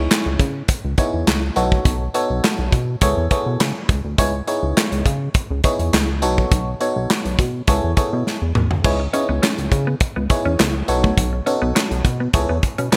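A straight, danceable 4/4 groove of early-eighties boogie funk is driven by an up-front studio drum kit with tight kick, handclaps, bright cymbals and gated reverb, a glossy, dark chorused synth bass, and a glassy, bell-like FM electric piano with chorus and phaser cycling through C#m9, B9 and Amaj9/C#, until a drum fill at 8.3 seconds ushers in a clean, mellow electric guitar riff with lush chorus sitting in the background from 9.0 seconds, all within a bright 1980s-style digital production cut from a longer piece.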